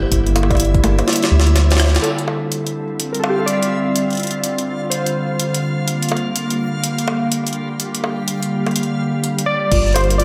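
Swung sixteenths in 4/4 drive this melancholic, cerebral IDM excerpt, led by a gritty, pitched-up jungle sampler kit of high-tuned snare, hi-hat, rim clicks, bongos, toms and crash up front from 0.1 s, with a deep electronic kick in the background and a drum fill building to a band accent at 1.9 s. A glassy FM pad holds ethereal sustained chords throughout, while a warbling lo-fi synth keys melody, a woody kalimba arpeggio and a round, nasal analog bass open the piece, the bass and kalimba stopping at 2.0 s and returning near the end. A reversed, granular swelling texture floats beneath, and the mix is soaked in plate reverb for a dreamy atmosphere.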